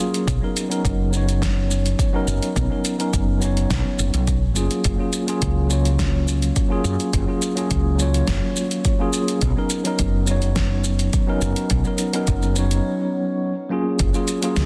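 Sunset chillout at 105 BPM in a straight 4/4, sunny and blissful, cut from a longer piece. A clean, up-front tine electric piano with digital delay opens at 0.0 s. A deep house drum kit of hi-hat, shaker and a fat, softly clipped snare follows at 0.1 s, then a deep electronic kick and a dark, round, punchy woody fretless bass with analog chorus arrive at 0.3 s, over chords shifting between Bmaj9 and F#maj9. The tape-warm drums carry a re-recorded small-room character, set in light reverb and digital ambience under a dense, heavily limited modern master.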